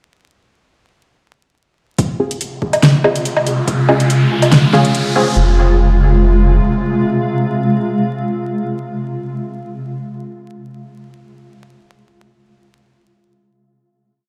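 Deep dubstep in a meditative, heavy half-time mood, where a build from 2.0 seconds gathers punchy overdriven kick, fat snare, metallic hats and woodblock, a round soft sub bass in chopped phrases, muted detuned chord stabs with chorus and dub echo under a filter sweep, a riser and a cloudy, evolving granular pad, before a final hit at 5.4 seconds leaves the pad and stabs ringing over the sub bass, which fades out shortly after, in a huge ambient space with vinyl crackle.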